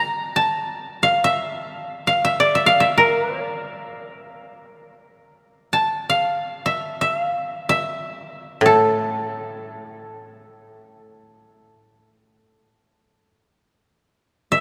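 A long, cathedral-like reverb surrounds this recording, with a tail that lingers for several seconds, while the koto itself sits up front with a dry, woody attack from its fingerpicks. This is Japanese traditional chamber music in free time, calm and austere in mood, cut from a longer piece. A single koto carries the melody from the opening, ranging across the middle and upper register. At 8.6 seconds a second koto enters in accompaniment, sounding a low, solitary note beneath the line, and both parts fall away almost together. After a pause filled only by the hall's resonance, the melody koto returns for one brief pluck at 14.5 seconds.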